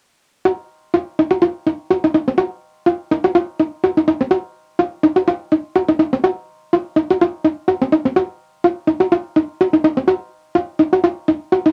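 Afrobeat at 125 BPM in 4/4, this short cut from a longer piece has a funky, hypnotic mood, with a light swing on the sixteenths. A lone handpan carries the whole passage, playing arpeggios from 0.5 to 11.7 seconds within a compact range from C4 to Gb4. Its nitrided steel tone rings out bright and mid-forward, struck with sharp finger strokes that give a meditative quality to the arpeggiated figures. The handpan sits up front in the mix, colored by a cassette tape effect. The sound carries a wet booth ambience with a short decay, and the whole has the feel of a home recording on cassette.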